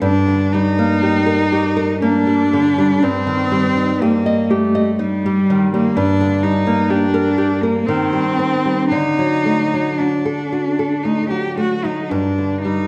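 A bowed cello with smooth, even vibrato sings the melody close and up front, while a dark, small-sounding fingerpicked nylon-string guitar, its finger squeaks audible, accompanies through Gm, Cm/G, Cm/Eb and D before settling on G5 at 12.1 s, in this elegiac, solemn fragment of a romantic duo in G minor, played rubato in 3/4 at around 55-65 BPM, tuned to A4 = 435 Hz and set in a wet recital hall reverb lasting 1.5 s.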